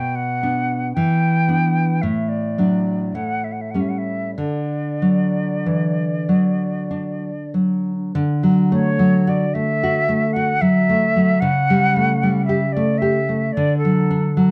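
Serene and tender, this romantic duo for flute and classical guitar drifts in a slow 3/4 at 45-59 BPM, its rubato feel letting the time breathe freely in D major. The concert flute carries the melody with an airy, expressive tone, soft attacks and gentle vibrato, sitting close and up front. Beneath it, the fingerpicked nylon-string guitar supplies a woody, full-bodied accompaniment, its old strings giving a dark, deep classical character, and it sits slightly louder than the flute. The harmony moves from Bm through Em7, D/A and A7 before settling on D at 4.4 seconds, then shifts to A7/C# near 11.4 seconds and returns to D at 13.5 seconds as a second section unfolds. A wet studio reverb and a dark, warm production surround both instruments in this short excerpt cut from a longer piece.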